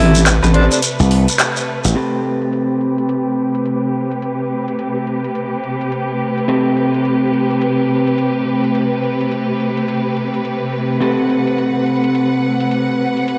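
Swung sixteenths at 106 BPM in 4/4 push this funky, swaggering glitch hop fragment in A dorian, which opens on an Am9 chord. An electronic, layered drum and bass kit runs throughout, with overdriven, bright hi-hats, handclaps, rim clicks and crash cymbal, while a grainy, mellow shekere adds live-room texture near the start. A heavy, saturated wobble bass with chorus sits up front for only the first 0.7 seconds, and a punchy, foam-muted thumbed slap bass takes over from 1.0 to 1.9 seconds. Throughout, a lush, bowed string section carries sustained chords, clear yet roughened by vintage 12-bit sampler grit, and a filter sweep later moves across it. A slightly broken-up, compressed electric guitar adds filtered stabs with analog delay, and a distant, roomy tenor saxophone with vibrato and delay offers a brief melodic phrase at the outset. The band hits one accent together, and the whole mix has a dry, gritty hardware character with light digital ambience.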